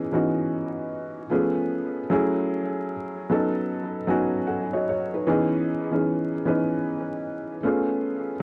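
A felt-muted upright piano plays alone, soft, mellow and up front with its key action audible, through a low-pass filter and tape echo in this melancholic, reflective hip hop excerpt at 76 BPM with a swung sixteenth feel in C# minor, moving through lush minor-ninth and dominant chords with a brief fill from 3.7 to 5.3 seconds, all set in a modest studio room and colored by worn cassette warble, drifting pitch and vinyl crackle.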